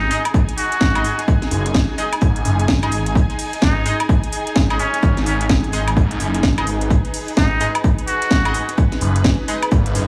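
A muted trumpet opens this swaggering, bouncy bass house excerpt alongside a swirling, thick phased saw bass and dark, woody bowed strings; the trumpet plays a nasal jazz-style solo with vibrato and scooped notes, trailed by digital delay. Sidechain pumping moves the bass, the strings and a band-passed, chorused chord stab tucked in the background. An overdriven house kit with cracking snare, metallic hats and woodblock enters together with a very quiet brushed acoustic kit, and a punchy electronic kick follows up front. The trumpet stops at 8.7 seconds as the other parts continue in a small-room ambience with light studio reverb.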